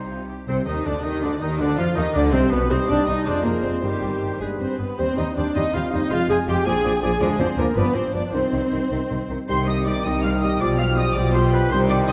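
In a straight 6/8 at 107 BPM, this stormy, dramatic classical-period movement in C minor, cut from a longer piece, drives forward with bowed strings: a close, vibrato-rich violin section carries the melody, while a lush second violin section, an oboe and a pure-toned flute section from 0.5 seconds weave second lines. Violas and a mellow bassoon fill the accompaniment, above a distant cello section and focused, up-front double basses, with a tight French horn section sustaining chords. A dark trumpet section enters with stabs at 9.5 seconds, and the whole orchestra sits in a roomy concert-hall reverb with a dusky production.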